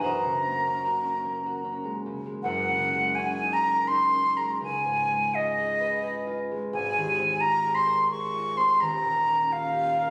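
In a rubato 3/4 drifting between 71 and 89 BPM, this luminous, pastoral excerpt of an impressionist classical duo in Gb lydian sets an airy, straight-toned silver concert flute melody with a crisp attack up front over the ringing, fingerpicked concert harp, whose accompaniment ranges from Eb1 to Gb6 through chords such as Gbadd9, Db9 and Eb9, all heard as a phone recording in a recital hall with moderate reverb.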